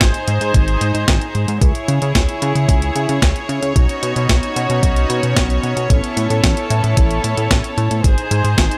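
All four parts start together at the outset: a warm studio string section holding soft-attack, sul tasto chords over a chorused synth bass, a 12-bit drum machine and an electronic kick, setting a bittersweet yet danceable italo disco mood in a straight four. The bowed ensemble sounds pure and floating up front, sustaining chords through a progression of G#, C#m, Badd9 and Aadd9 before returning to G# at 8.0 seconds. Beneath it, the glossy, retro synth bass blends pulse-width-modulated and sawtooth tones with ring modulation and a plucked filter, its fast attack and chorus giving a mellow sheen. The drum machine's overdriven hi-hat and medium-tuned snare sit up front, while the thumpy, sampler-style kick carries the same overdrive and studio ambience. The whole cut, taken from a longer piece, has a dry, gritty hardware character wrapped in digital ambience.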